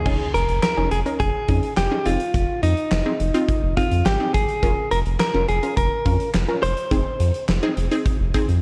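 Dark, softly reverberant small-room production frames this nocturnal, cool synth-pop fragment at 105 BPM in straight 4/4, where a clean, compressed, direct-recorded electric guitar with slapback echo carries the melody from 0.0 to 7.4 s over a bright, detuned, wave-folded unison pluck, a round, deep analog bass and a big-room arena drum kit with a fat snare, punchy kick, hi-hat, handclaps and crash cymbal, all moving through Dbsus2/F, Ab/F and Bbm/F chords.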